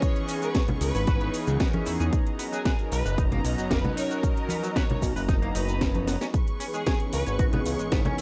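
A fat, detuned analog bass with a moving filter sweep drives this groovy, sleek nu-disco excerpt from 0.8 seconds, over a punchy electronic kick, a house kit of cracking snare, metallic hi-hats and shaker, ringing, close congas and cabasa, a twangy, slightly broken-up electric guitar riff with lush chorus, a smooth analog pad with slapback echo and background symphonic strings both pumping to the sidechain, and a distant, rich violin section carrying the melody through analog delay until 7.3 seconds, with a drum fill at 6.1 seconds over C#m7 and Bmaj7 chords.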